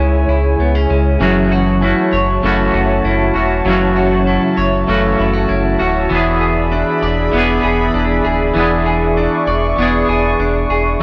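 Dream pop at 98 BPM in F# minor, ethereal and haunting, moving from C#m to F#m7 and E7 in this section of a longer piece. A warbly, detuned tape-like pad holds sustained chords with chorus and its own reverb, while an up-front clean electric guitar plays picked arpeggios through subtle chorus and tape echo over a deep, sine-like sub bass with octave. At 1.2 seconds a twangy, scooped electric guitar joins with fingered accompaniment colored by harmonic tremolo, in a dry, gritty cassette recording.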